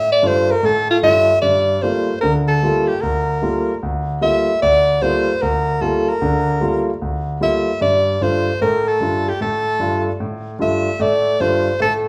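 A clear, close-miked soprano saxophone carries the melody in this cool, spiritual jazz passage at a swinging 150 BPM in G dorian, tuned to A4 = 436 Hz, opening with a brief solo spot before moving through vibrato, subtone and scooped notes. Up front beside it, a concert grand piano with deep bass, long sustain and audible action noise supplies intimate, polished accompaniment over Dm/G and Gm9 harmony, returning to Dm/G at 7.8 seconds. A wet, large studio reverb places the pair further back in the room, and the recording is cut from a longer piece.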